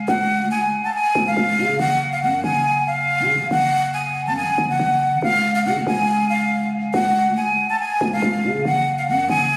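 Caught on a phone in a small room, this short cut from a longer piece carries light reverb and compression around an ominous, tense drill beat at 140 BPM, felt in half-time and tuned slightly sharp to A4 = 445 Hz. A growling, buzzy 808-style bass with a fast attack and decaying sine body sits up front from the start, while a breathy jazz flute enters at 0.1 seconds with a metal, straight-toned sound, soft attack and lifted highs, its expressive high melody trailed by tape echo. The harmony moves between C# and F#sus2 throughout.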